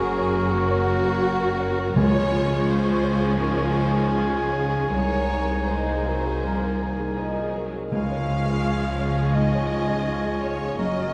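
A mellow alto flute carries the tender melody, doubled by a rich violin section with a soft attack and expressive vibrato, in this hopeful, emotional excerpt from a cinematic orchestral score. Above them, a hollow, airy flute ensemble sits high, while a close-miked cor anglais, a very quiet clarinet and a distant, lush second violin section weave supporting lines. A felt-muted upright piano adds soft, intimate accompaniment with a smooth, even viola section, as a very quiet concert harp rings out fingerpicked arpeggios. A double bass section and a cello section anchor the low end with bowed warmth. The pulse breathes freely in rubato, and very quiet, dry timpani strokes land at 2.0 and 7.9 seconds. A dark production and a concert hall reverb give the whole ensemble a spacious, glowing depth.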